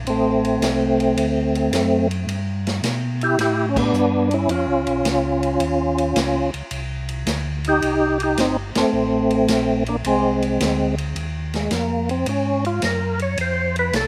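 A dry recording captures a soulful, bluesy soul jazz organ trio in swing, cut from a longer piece. A mellow, round tonewheel organ carries the bass line with chorus vibrato and a slow rotary speaker, while an up-front, fat, lightly overdriven organ with percussive second-harmonic tone, key click, slapback echo and slow rotary carries the melody; behind them, a distant, roomy big-band drum kit with dark cymbals and a boomy kick keeps the groove. The band hits accents at 3.7 and 8.7 seconds before the lead organ opens into a solo at 11.2 seconds.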